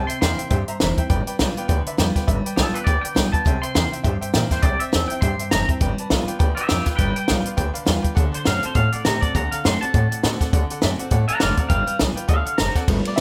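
A light reverb frames this rollicking, rowdy rockabilly excerpt, which swings its eighth notes at 204 BPM in G mixolydian over C7, G7 and D7 chords. A clean, twangy electric guitar carries the melody through lush chorus and analog delay, while a full-bodied jumbo steel-string acoustic guitar is picked underneath and a jangly, metallic tack piano adds accompaniment, including a honky-tonk fill at 0.7 seconds. A woody, thumpy pizzicato upright bass on gut strings anchors the low end, and a dry, up-front compact cocktail kit with a punchy kick, high-tuned snare and dark cymbals enters at 0.1 seconds.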